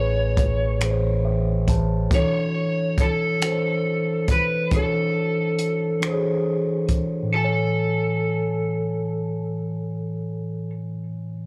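At the outset an Amaj7 chord sounds on a mellow tine electric piano, a rubbery, hollow square bass with tube saturation holding a low A, and an overdriven lead guitar through a small cranked amp picking a lo-fi melody between A4 and C#5. This is a short cut from an intimate, tender slow R&B piece in 6/8 at 46 BPM in A major. The piano plays a fill from 0.8 to 2.1 seconds, where the bass drops out and the harmony moves to E13sus4, while a dry, compact cocktail kit of finger snaps, hi-hat and punchy kick plays from 0.4 to 7.1 seconds, all within a small, gritty room sound.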